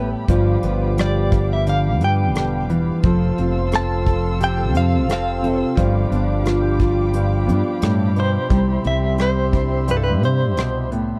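At an unhurried 88 BPM in a straight 4/4, soft brushes on hi-hat, tight kick and rim click sit up front from 0.3 seconds in this intimate, heartfelt acoustic folk-pop ballad excerpt, with a punchy fretless electric bass anchoring the low end. A fingerpicked steel-string dreadnought guitar with full-bodied fresh strings and audible finger squeak carries the accompaniment, while a ringing Celtic harp adds arpeggios and a veiled, con sordino chamber string section holds dark, soft-attack chords with vibrato. The melody belongs to a clean, compressed electric guitar recorded direct with tremolo, playing over G7, Fmaj7 and Cmaj7 in a dry, close 1970s-style small-room sound.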